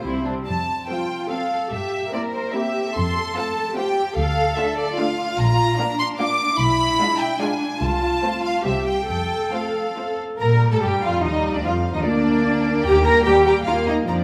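A quick, spirited classical-period movement for string orchestra in three, played with a flexible rubato feel and cut from a longer piece. A clear, pure first violin section carries the melody up front over a rich, distant second violin line and floating, soft-attack violas. An intimate cello section with vibrato and a close double bass, entering at 0.1 seconds, anchor the low end, every section bowed sul tasto inside a wet concert hall reverb, and the harmony moves to new ground at 10.4 seconds as the second section begins.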